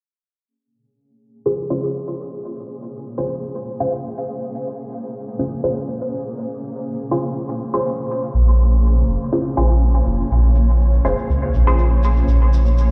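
A light swing on the sixteenths shapes this deep, hypnotic dub techno fragment, cut from a longer piece. Muted, detuned chord stabs arrive at 1.5 seconds, their filter-plucked attacks and short decays colored by phaser, cassette tape grit and dub echo as they sit up front. A cloudy granular pad joins at 1.9 seconds, holding blurred, slowly blooming chords over a single Bbm7 harmony, evolving inside its own reverb. At 8.3 seconds a round, soft sub bass settles in up front, with a grainy, bright egg shaker ticking in the background. A filter sweep runs through the whole passage, and the mix sounds as if played on a big sound system in a bare room, bathed in large studio reverb and a low-pass filter.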